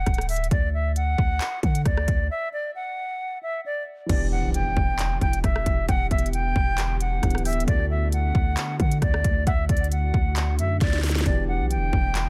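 A reedy silver flute carries the melody over a boomy 808 bass and a crisp, up-front trap kit with a hard-clipped kick in this dark, brooding half-time trap cut in E minor at 134 BPM, where a dark background grand piano enters at 4.1 seconds alongside a faint impact, followed by an ethereal chorused pad at 5.1 seconds, while a very quiet round pluck adds a second line from 5.9 to 9.9 seconds before a drum fill at 10.8 seconds, all in a dense, heavily limited mix.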